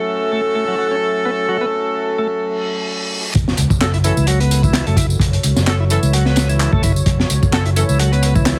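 This energetic, swaggering breakbeat excerpt opens on a deep, moody pad of detuned sawtooth chords sitting in the background with chorus, reverb and sampler grit, pumping against the beat, while a tight, clear horn section jabs out stabs in octave doubling, up front and coloured by a filter sweep and delay. From 0.3 seconds an overdriven tonewheel organ shouts a gritty riff through a slow rotary speaker. A brief break arrives at 2.4 seconds, and a reverse cymbal with a sub drop rises into the drop at 3.3 seconds, where a crunchy breakbeat kit lands with a punchy kick, a high-tuned snare and hi-hat, saturated and rolled off on top. Layered electronic tambourine and handclaps join the kit, and a fingered electric bass pushes a punchy, amped line up front alongside it. A moderate room ambience, heavy radio-style compression and vinyl crackle give the whole mix a dusty, squeezed character.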